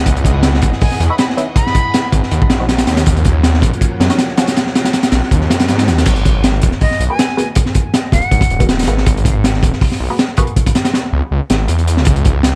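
A crunchy, saturated breakbeat kit with a punchy kick, high-tuned snare and dark cymbals drives this raw, atmospheric drum and bass and jungle excerpt at 160 BPM in G# minor, sitting up front beside a thick, menacing detuned saw bass that beats throughout. In the background, muted dub chord stabs with phaser, analog chorus and dub echo move through minor ninth chords, while a breathy, bright silver concert flute with vibrato and dub echo appears at 0.8 seconds and returns at 6.8 seconds. A very quiet, wind-like noise texture hovers under the first 6.1 seconds, and the dry mix carries vinyl crackle.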